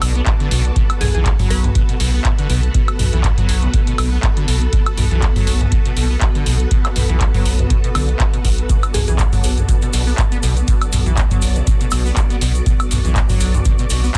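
Acid house at 121 BPM with a light 16th-note swing, playful and trippy, built on a single Bm7 chord where a squelchy, resonant saw acid bass riff with overdrive, chorus, 12-bit grit and tape echo rides over a round, dark analog bass, a deep dry electronic kick entering at 0.3 seconds, a booming analog drum machine with handclaps, metallic hats, toms and woodblock, pumping vintage string-machine chords, a cloudy granular pad in the background, brief crystalline wavetable pluck phrases with chorus and delay at 1.0 and 8.9 seconds, and a grainy tube shaker joining at 8.7 seconds, all in a dry, dense, heavily limited modern mix.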